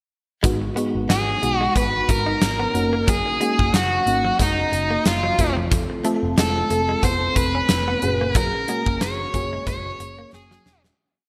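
Urgent and moody, this short 1980s-style pop piece moves at 91 BPM in 4/4 with a light sixteenth-note swing, cycling through G#m7, F#6, F and F#add9 over a single verse. A gated 80s drum kit sets a big, polished backbeat with a medium-tuned snare and tight kick, while a vintage muted picked electric bass drives steady eighth notes in a dark, round, foam-muted tone. An FM electric piano with a soft pad layer pushes dreamy, detuned close-voiced chords through chorus and phaser, and a direct-recorded clean electric guitar sits in the background with a compressed, muted single-note riff treated with lush chorus and digital delay. From 1.1 seconds a smooth overdriven lead guitar comes up front with bright, hook-driven motif phrases, also carrying digital delay. The production is crisp and digital, set in a lush hall reverb with a touch of small-room ambience, and the piece fades out from 8.4 seconds as a drum fill closes it at 10.3 seconds.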